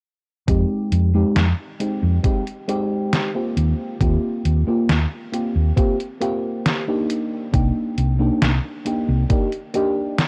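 Nostalgic and woozy, this slow 68 BPM vaporwave excerpt drifts through Fm9, Eb6 and Cm9 as a soft, full-bodied FM electric piano, colored by phaser, lush chorus and analog delay, floats over a dark, round hollow-body fingered bass, a thumpy sampler-style electronic kick and a detuned 8-bit drum machine's hi-hat and snare, all sitting dry and up front on worn, warbling cassette tape with drifting pitch.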